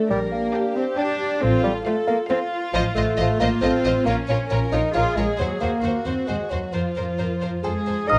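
A delicate, tinkling music box slips in at 7.6 seconds to take the melody alongside a present clarinet, capping this short, magical and mischievous cinematic excerpt in 3/4 at 136 BPM. Before that, a chamber string ensemble played sul tasto with soft attacks carries the tune on violins, with a second violin line in the background, violas filling the middle, and cellos and an up-front double bass section anchoring the low end. Meanwhile, a mellow, distant bassoon adds accompaniment and a dark, roomy French horn section holds sustained chords behind them. A hollow concert flute and a very quiet oboe touch in only at 8.1 seconds, all set in light reverb with close, detailed microphones over a harmony that moves from Gm/Bb through Bbm and Cdim/Eb to a resolving F.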